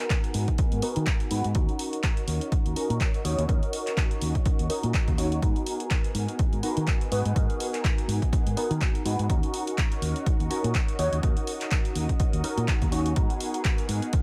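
Digital ambience surrounds this funky, nostalgic filtered disco house clip, with a filter sweep running through its full 14.2 seconds at 124 BPM in G# minor, swung lightly on the sixteenths. A funky polysynth comp leads the accompaniment from the start, its detuned sawtooth and pulse-wave tones made mellow by chorus, phaser and a low-pass filter, with a moving notch and sidechain pumping. Behind it, a chamber violin section holds bright, earthy bowed chords with light vibrato, roughened by vintage 12-bit sampler grit and likewise filtered and pumping. A punchy analog drum machine supplies handclaps and hi-hats from the outset, an up-front electronic kick joins at 0.1 seconds, and a warm, direct fingered electric bass enters at 0.3 seconds under the G#m7 and D#m7 changes. A close, dry tambourine slips in, barely audible, at 13.2 seconds, just as the harmony returns to G#m7 before the cut.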